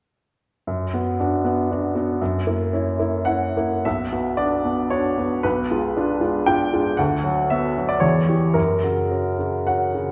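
A romantic-era classical character piece for solo upright piano in B minor, brooding and passionate, moving in a flexible, rubato 3/4 at roughly 101-119 BPM. The piano sounds woody and intimate with audible action noise and long sustain, spanning B1 to G5, while a wet recital-hall reverb places the listener further back in the room. Cut from a longer work, the passage opens on Bm/F# at 0.7 seconds, shifts to a new section at 3.9 seconds that passes through a Bdim7 chord, and arrives on F# at 8.6 seconds.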